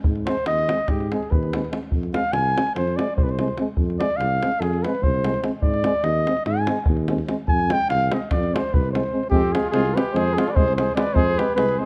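A straight 9/8 pulse at 292 BPM in eighths drives this fiery, restless Balkan folk excerpt for brass band in F dorian sharp4, with a tight, close davul up front and a tuba with light vibrato holding the bass between C2 and Ab2. A mellow flugelhorn carries the melody from 0.3 s, soloing up front over two euphoniums in the background, one clear with a soft attack and the other distant and roomy, while the harmony moves between Ab and Fm. At 9.3 s a warm trumpet enters with a second line, and the dark production sits in light reverb.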